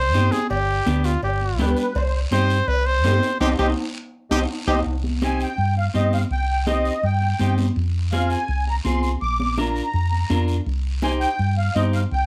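Driving and danceable, this cumbia opens with a warm, up-front trumpet carrying the melody in a pop style with light vibrato, over a dark, round hollow-body bass, a clean picked electric guitar, ringing high-tuned congas played with soft hands, a raspy guiro, and distant metal-shell cowbell and timbales in the background. The reedy, shimmering musette accordion joins at 1.6 s with a second line. During a drum fill and band accent, the trumpet, cowbell and timbales drop out at 4.8 s, and at 4.9 s the accordion takes over with a vintage, band-limited solo under light reverb.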